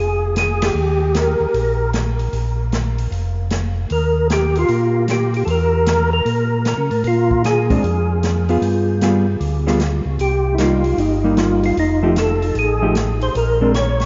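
A mellow, round tonewheel organ with third-harmonic percussion and a slow rotary speaker carries the melody of this soulful, swinging soul jazz organ trio excerpt, over a piping, scooped organ bass line and a dark open jazz drum kit with a boomy kick, with a hollow-body electric guitar adding clean, fingered accompaniment from 7.7 s, all sitting in a vast, echoing cathedral reverb.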